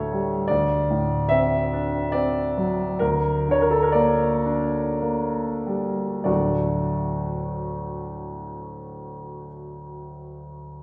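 Classical romantic character piece for solo piano, lyrical and hopeful, in triple metre played with rubato and slowing down over its first 6.3 seconds. The clear, open concert grand sits up front with a deep bass, reaching from low D2 to E5, as the harmony moves from a D7 chord through Gm/D to settle on D at 6.3 seconds, where a new section begins. A wet recital hall reverb surrounds this short passage cut from a longer piece.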